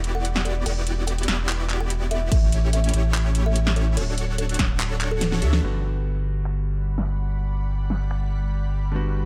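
Future bass at 145 BPM in a half-time feel with a light swing on the sixteenths, this bright, lush fragment opens on a drop built from huge, detuned supersaw chords carrying the riff under analog chorus, sidechain pumping and a low-pass filter. A saturated sub bass sits deep and up front, pumping along from the start. A pop drum kit with a fat snare, metallic hats, finger snaps, handclaps and crash has filtered highs, and a punchy electronic kick joins between 2.3 and 4.7 seconds. A woody, plucked kalimba melody tucked in the background trails dub echo as the harmony moves from Em9 through A7 to Dmaj7. After a drum fill and a band accent, the supersaws and kalimba stop at 5.6 seconds, when a clear grand piano takes over the accompaniment on Gmaj7, soon joined by a shimmering, ethereal ambient pad with octave-up shimmer and granular warble, all in a dry mix.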